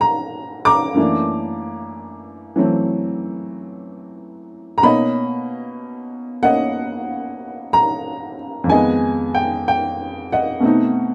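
A light reverb surrounds a woody, boxy upright piano sitting up front, its short-sustain notes carrying a warm tone across a range from F2 to D6. This smoky, moody solo jazz passage, cut from a longer piece, moves at a slow 62 BPM in 4/4 with a swung eighth-note feel, tuned to A4 = 441 Hz. Over about 11.1 seconds the harmony travels from Bbm7 through Gb7alt and a lingering Bmaj9 to Fm7b5, closing on B7b9 at 10.6 seconds.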